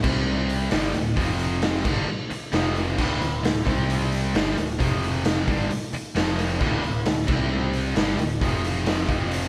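A raw garage drum kit sits up front in this menacing, driving hard rock cut, its gritty, saturated sound pairing a punchy kick and medium-tuned snare with crash and hi-hat in a bright stone room, dark and rolled-off on top. Two bright, distorted electric guitars, one high-gain, hammer out a D minor riff at 132 BPM in straight 4/4, cycling through power chords on C, D and F with a Dsus4, while a growly, amped picked bass holds the low end. The whole band plays live in one room with light reverb across the short 9.5-second section.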